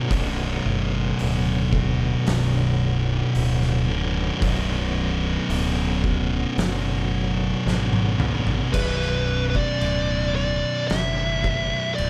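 A light reverb wraps this brooding, sludgy stretch of stoner and doom metal, cut from a longer piece, where two thick fuzz guitars grind out the riff over a growling, overdriven fingered bass and an oversized low-tuned drum kit whose fat snare and punchy kick ring in a bright stone room with a rolled-off top. A clean tonewheel organ with key click holds sustained chords through a slow rotary speaker until 8.7 seconds, when a drum fill that began at 7.7 seconds comes to an end. At that point a dark, compressed fuzz lead guitar takes the melody up front.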